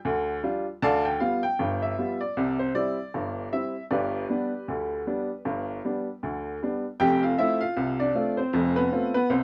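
A lightly swung 2/4 pulse at 78 BPM carries this jaunty, playful ragtime fragment, cut from a longer piece, in which a bright, woody upright piano plays solo up front from F1 to A5 through chords of G, C and F, set in light reverb and coloured by the warbling pitch drift of worn old cassette tape.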